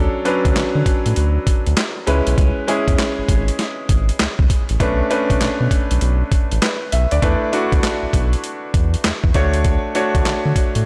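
This new jack swing cut of R&B moves at 99 BPM in 4/4 with a 64% swing on the sixteenths, sounding confident and bouncy across this short clip of a longer piece. A bright grand piano sits up front with a brilliant, natural tone and a slapback echo, comping through Dmaj7, C#m7, Bm9 and E7sus4 before returning to Dmaj7. Underneath, a round analog bass blends sawtooth and sine with ring modulation, giving a deep, dark, evolving sound with a fast attack and sustained notes. A boom bap sampler-style kit enters at 0.3 seconds, gritty and pitched down, with a thumpy kick, a high-tuned snare, hi-hat and handclaps all compressed and placed up front. Light reverb and digital ambience give the mix a touch of space.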